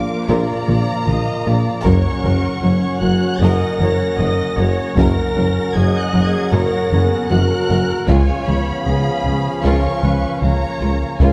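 This short, vast and tense cue from a hybrid orchestral and electronic film score opens with strings, brass, synths and a muted piano sounding together at 77 BPM in a straight 4/4, the harmony moving from Bb to Gb at 1.8 seconds and settling on Db at 8.1 seconds. Lush, vibrato-rich violins carry the melody high above a focused, close second violin line and distant, even violas, while a chorused pulse-width pad shimmers very quietly beneath. Mellow French horns and smooth-topped trombones hold sustained chords in the background as a solo tuba anchors the bass, and a rubbery, hollow square-wave bass riff, the most prominent part, bounces through the low end with a resonant filter pluck. Very quiet cellos and double basses join at 0.3 seconds, and a compressed, saturated taiko ensemble struck with hard sticks enters at 0.7 seconds, while a felt-muted upright piano, intimate with audible action noise, drifts in and out as faint texture. 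The dark production sits in a concert hall with a moderate reverb tail, and the passage is cut from a longer piece.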